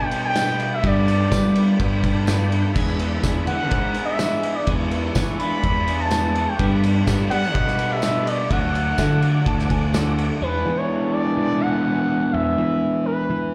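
Upbeat yet wistful, this indie rock passage at 125 BPM in 4/4 is cut from a longer piece and sounds like a live gig heard through a club's PA, with a smooth sawtooth lead gliding up front on portamento and vibrato over a round, fuzzy picked bass. Behind them, a bright, crunchy overdriven guitar with lush chorus and a second overdriven guitar play riffs with slapback echo, while a clear tonewheel organ holds sustained chords through a slow rotary speaker, and a loose acoustic kit with dark cymbals and a punchy kick drives along with a jingly tambourine over Gadd9, E7 and D chords. A soft, pure FM bell adds a gentle phased second line from 9.0 seconds, and the organ drops out at 10.4 seconds as the lead, guitars and bass carry on over E7.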